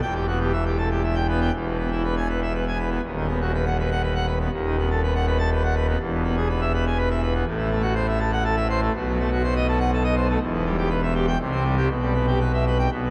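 Majestic and stormy, this classical organ toccata in triple metre unfolds in a vast, echoing space where a huge, wet reverb hangs behind every chord. A solo pipe organ on full registration with mixtures sits up front, its brilliant, romantic voicing spanning from the deep pedal register to the high treble. The harmony turns from major to minor at 7.5 seconds, and this short portion, cut from a longer piece, closes on a minor chord at 11.9 seconds.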